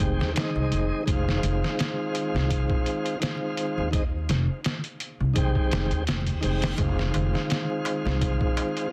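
A brooding, melancholic trip hop fragment in F minor at 84 BPM opens on an Fm7 chord, with a smooth, key-clicking tonewheel organ run through fast rotary speaker, harmonic tremolo, tape echo and gritty 12-bit sampler colour, set up front beside a woody, dark pizzicato upright bass on gut strings and a muffled, pitched-down sampler-style drum kit with a thumpy kick and medium-tuned snare. The 16ths swing gently, and a very quiet electronic reverse cymbal enters at 6.1 seconds before a crisp, small metal-shell darbuka slips in behind at 6.8 seconds, struck with hard hands. The sound is dry and dense, heavily limited, with a bed of vinyl crackle.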